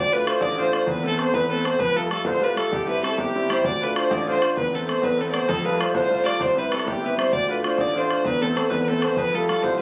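A driving, dark and lively Celtic slide in D dorian moves at 130 BPM in a straight 12/8, tuned slightly low to A4 = 438 Hz and cut from a longer piece. A close, up-front fiddle carries the melody with an airy bow and gut-string tone, while a baroque flute in the background shares the same register as a second line, its wooden, pure, straight tone and crisp attack adding a reedy edge. An upright piano sits up front with a brilliant, intimate sound, its woody action noise audible as it accompanies across a broad span from low bass to the middle register. A boomy, open bodhran with a vintage, band-limited character supplies the percussion. The harmony cycles through Dm, Amadd9/E, Fadd9 and C, and the whole ten-second passage sounds as if captured on a phone in the room, with club reverb, light reverb and compression.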